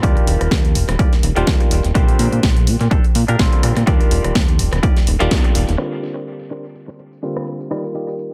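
Joyful, feel-good filtered disco house at 125 BPM in Bb major, this excerpt sets a stringy, phased clav and a picked, twangy clean guitar riff over a punchy plucky analog bass and an overdriven, up-front electronic kick, with a house kit of cracking snare, rim click, tambourine and hi-hats, its hats and percussion pumping, all moving through filter sweeps and tape echo on Ebmaj9 and Bb69 chords, as a band accent at 5.3 s precedes the bass and kick dropping out by 5.8 s.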